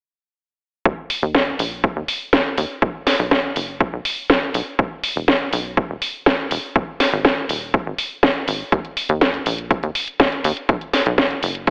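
A straight 122 BPM groove in 4/4 drives this expansive, dreamy progressive house fragment, cut from a longer piece, as a punchy, overdriven electronic kick and a saturated sawtooth-and-square sequencer bass with a fast, plucky filter attack and sidechain pumping arrive at 0.9 seconds, joined at 1.1 seconds by an up-front, layered house kit of hi-hat and cracking snare that sounds re-recorded in a large room, all heard through a narrow telephone-like tone with light reverb.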